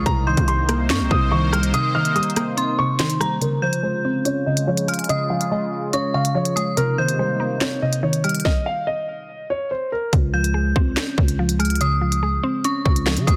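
Dark and tense, this half-time drill cut from a longer hip hop track moves at 143 BPM over chords shifting between Cm7 and Dbmaj7. A dark, mellow concert grand piano carries the melody up front until 10.1 seconds, its intimate tone marked by audible action noise and softened through a low-pass filter and tape echo. Above it an eerie, inharmonic synth bell adds a second line with chorus and tape echo, while a woody, round mallet-like pluck supplies the accompaniment and a sweeping, resonant sawtooth pad holds airy sustained chords until 8.4 seconds. The electronic drum kit of hard-clipped kick, sharp snare, crisp hi-hats, rim clicks and handclaps sits up front, with the kick muted briefly and a filter sweep running through the middle before a stop from 8.5 to 10.1 seconds. A growling, buzzy 808-style bass appears at the opening and returns at 10.1 seconds for the final stretch, all set in light digital ambience within a dense, heavily limited modern master.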